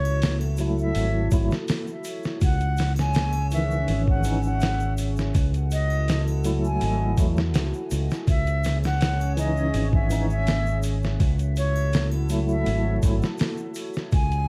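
Dark and hypnotic, this trip hop fragment at 82 BPM sits on a deep, detuned analog pad with chorus and an up-front fingered electric bass, while a gritty, pitched-down sampler-style drum kit with a thumpy kick and small room ambience enters at 0.2 seconds. A clean tine electric piano with tremolo joins at 0.6 seconds, and the triangle and egg shaker sit faintly in the background. Over the alternating F#m7/C# and C#madd9 chords, an airy, reedy baroque flute carries the melody with tape echo, all wrapped in a dusky production with vinyl crackle.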